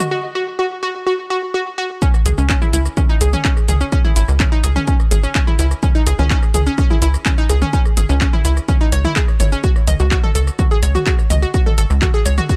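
A dry, gritty hardware recording of dramatic, melancholic melodic techno, cut from a longer piece, opens with a short build-up in which round, detuned analog pluck arpeggios, colored by chorus, cassette tape and analog delay, sit over a tape-warm drum kit of handclaps, hi-hat, rim click, shaker and toms, until the drop at 2.0 s brings in a heavy, up-front electronic kick, joined at 2.3 s by a tight, punchy, wave-folded sequencer bass whose sidechain pumping, shared by the pluck and the kit's hats, toms and percussion, drives the groove.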